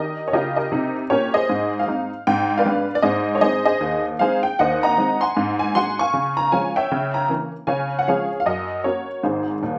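Stride piano jazz at 155 BPM with a swung 4/4 feel: a playful, exuberant excerpt from a longer piece in which a detuned, jangly honky-tonk upright piano plays solo, bright and up front, spanning Eb1 to Db6, moving from Ab major into Db major at 4.6 s through diminished passing chords, all set in a wet studio reverb with the rough character of a home demo mix.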